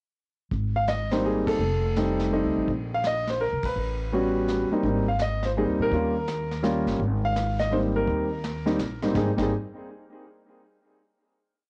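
A concert grand piano with tape echo sits up front, playing a motif-based melody in period phrases with syncopated comping and rootless voicings over a woody, growly pizzicato upright bass in a two-feel and a dark, grainy vintage brush kit with sweeps on the snare, in a sophisticated, swinging 3/4 jazz piano trio piece in Ab major at 167 BPM, recorded at home on cassette in a small room, with band accents at 1.4 and 3.6 seconds before a final chord at 9.2 seconds.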